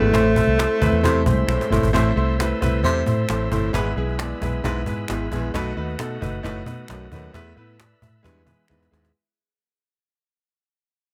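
Heard in a moderate studio reverb, this passionate, driving slice of uptempo 1960s-style soul at 133 BPM in A harmonic minor opens with a breathy, intimate alto saxophone phrase with tape echo that stops at 1.5 s, set over a clear baby grand piano, a dark, round muted electric bass, a snappy, saturated cajon, dry finger snaps, a gritty overdriven tonewheel organ with slow rotary speaker in the background and a punchy baritone saxophone riff, while a lo-fi, slightly broken-up electric guitar riff sounds briefly until 1.9 s, when the music begins fading out through chords moving from Am to E.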